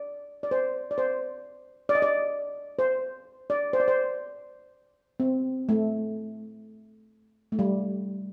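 Japanese traditional music in a meditative, still mood, this short cut from a longer piece features a solo double seconds steel pan played with soft rubber sticks in a free, rubato two-beat feel. The pan sounds metallic, shimmering and mellow, sitting up front with a boxy small-room character, wrapped in a moderate recital-hall reverb with a 1.6-second tail. A new section begins at 5.7 seconds and carries the passage to its close at 8.3 seconds.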